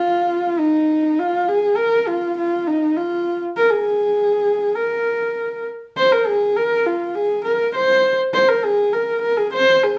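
A lone horsehead fiddle opens this solemn, windswept fragment of Mongolian traditional folk music and carries it alone from 0.0 to 10.0 seconds. Played by one bowed player on horsehair strings, the fiddle has a dark, woody, husky voice and sits up front in the mix. Light vibrato and portamento color its line, which stays within a modest middle range. The music moves in a straight, steady four-beat metre. A studio reverb gives the performance a live, roomy feel, as if captured in a single space. The piece is cut from a longer work, and the fiddle holds a windswept, solemn mood throughout.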